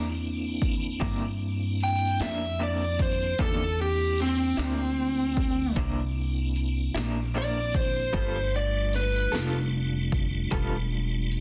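A dry, dense and heavily limited sound frames this short excerpt of swaggering, gritty slow blues, moving at 50 BPM in a straight 12/8. An upright bass plucks gut strings with a woody, thumpy tone that sits up front, while a tonewheel organ holds sustained chords through a slow rotary speaker with overdrive, chorus vibrato and audible key click. An electric guitar through a small old amp adds lo-fi, slightly broken-up accompaniment with tremolo, dropping out at 10.8 s. A punchy analog drum machine, re-recorded in a large room, comes in at 0.6 s with hi-hat, kick and snare. From 1.8 s a smooth overdriven lead guitar carries the picked melody up front, over harmony that moves from C9 to G9 at 8.1 s.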